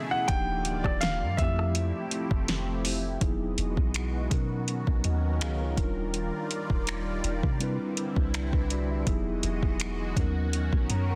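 Smooth and romantic, this short contemporary R&B fragment moves at 82 BPM in 4/4 with a light swing on the sixteenths, drifting through lush major-ninth chords such as D#maj9, Fmaj9 and Emaj9. A present, polished baby grand carries a brief melody with digital delay until 2.8 seconds, over a mellow, clean tine electric piano and a thick, detuned unison pad treated with chorus, phaser and sidechain pumping. From 0.3 seconds a deep, round 808-style bass and an up-front electronic kit with soft kick, fat snare, metallic hats, rim clicks and finger snaps settle in, all within a dense, heavily limited modern master.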